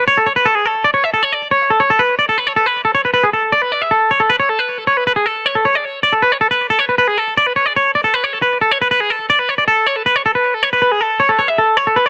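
A twangy, clean electric guitar plays alone and up front through this bright, wistful rock fragment in an unusual five-beat metre, its fingered lines touched with subtle chorus and tape echo, moving into a new section at 2.0 seconds and running to 12.1 seconds in a dry, close 1970s-style studio sound with light reverb.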